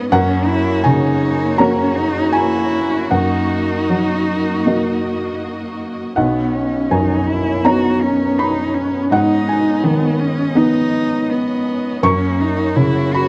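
Tender and intimate, this neoclassical passage, cut from a longer piece, unfolds with a rubato feel: a mellow, felt-muted upright piano with short sustain sits up front, a single bowed cello sings an expressive second line with vibrato and portamento, and a lush symphonic string section holds focused sustained chords at a softer level beneath them, captured in a dry, close 1970s-style studio sound.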